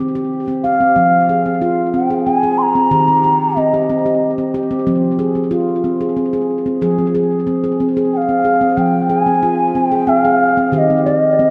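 This world meditative piece for tuned percussion moves gently at 92 BPM in a straight 3/4, settled in F minor with harmony that alternates between Eb and F minor. The handpan sounds throughout, playing arpeggios in a ringing, stainless-steel voice with a soft fingertip touch, placed up front. A mellow bamboo bansuri carries the melody in its upper register, entering at 0.6 seconds, falling silent at 4.5 seconds so the handpan plays alone, and returning at 8.1 seconds through to the end. Its airy, straight, tongued tone with rolled-off highs is expressive and also sits up front. Tape echo colours both parts, and a wet spring reverb gives the mix an echo-heavy character. The recording is a short excerpt cut from a longer piece, gentle and meditative in mood.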